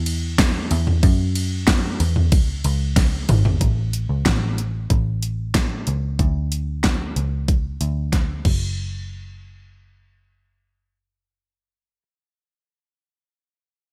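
A dark, round, foam-muted electric bass opens this earnest, dramatic pop excerpt at 93 BPM in a straight 4/4, joined at once by an up-front, overdriven electronic drum kit soaked in gated reverb, with a knocking kick, fat snare, warm hats, ride, crash and toms. The drums mark section changes with a fill at 3.0 seconds and another before stopping at 8.6 seconds, leaving the amped bass to carry on alone until 12.0 seconds. The production is bright and dry in a 1980s digital style.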